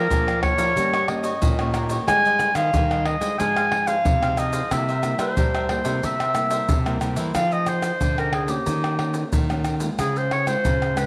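A clear, roomy clarinet carries the solo melody up front in this bittersweet yet lively samba and choro fragment, over crisp picked cavaquinho in the background until 7.3 seconds, a fingerpicked nylon-string guitar accompaniment with audible finger squeak, a second nylon-string guitar playing the bass line, and soft-handed egg shaker, tight surdo, pandeiro and tamborim, all set in a small room with a moderate echo-chamber reverb.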